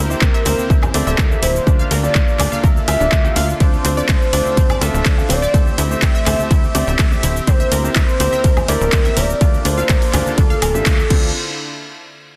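Driving yet dreamy, this progressive house excerpt sits in a steady, straight 4/4 groove, caught in the middle of a drop cut from a longer piece. A punchy, layered electronic kick sits up front, joined by a house kit of hi-hats, shaker, handclaps, woodblock, ride and crash, plus very quiet, close and dry bongos and congas played with hard hands. Underneath, a tight, nasal sequencer bass with tube saturation pumps with sidechain compression, while a very quiet supersaw pad holds lush, evolving chords over a D pedal moving through C7/D, Gm7/D, Dm7 and Am7/D. A bright unison pluck spins arpeggios in the background and a polished grand piano adds short stabs, both carrying tape echo and sidechain pumping. On top, a velvety sawtooth-and-triangle lead sings a sustained melody with chorus, vibrato and tape echo, and the band hits an accent at 10.9 seconds before the chords drop away at 11.3 seconds, all wrapped in light digital ambience and a dense, heavily limited master.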